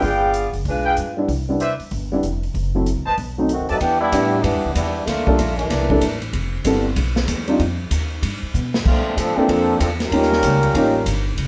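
A muted trombone section, nasal and bright through straight mutes with light vibrato, takes the spotlight from 3.8 s in this brassy, swinging big band jazz excerpt at 190 BPM in C major. It opens with a brief, smooth-topped saxophone section melody and trumpet section stabs, while a warm, natural baby grand piano comps from 1.2 s over woody, thumpy pizzicato upright bass on gut strings. The airy, polished drum kit, with dark cymbals and a punchy kick, swings throughout and adds a fill at 8.5 s, all heard in moderate studio reverb with the band playing live in one room.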